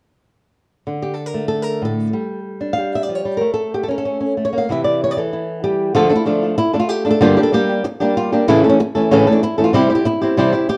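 A fingerpicked flamenco guitar leads this dramatic, intense flamenco passage, cut from a longer piece and played in free time, its melody ranging from G2 to F5 with fresh strings, audible finger squeak and a plate reverb that gives it presence up front. At 5.9 seconds a second flamenco guitar joins in the background with stabs between G2 and G4, also fingerpicked, with the same fresh strings and squeak. The harmony moves through D5, G5, A and C in the first half, then turns to Dm, Gm, A and C once the second part begins around 6.0 seconds, giving the later stretch a darker, minor cast. Both guitars sound acoustic and warm, set in a wet studio reverb with a short decay, and the overall production leans dark. The tuning sits slightly low, at A4 = 439 Hz.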